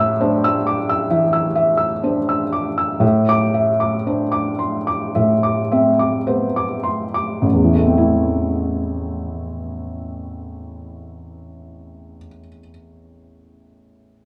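Reflective and melancholic, this short excerpt of neoclassical minimalist piano sits in A minor with a free, rubato feel in 4/4, moving at roughly 50-68 BPM. A felt-muted upright piano plays alone from 0.0 to 14.2 seconds, its soft, mellow tone placed up front and intimate, spanning a range from A1 to E6. The harmony rests on A minor, shifts to Cadd9 over an A bass at 3.0 seconds, and returns to A minor at 7.4 seconds, where a second section begins. Through the opening 7.4 seconds the tempo gradually slows, lending the phrase a hesitant, breathing quality. A large studio reverb with a 0.9-second decay surrounds the muted piano in a natural room sound, as if captured live.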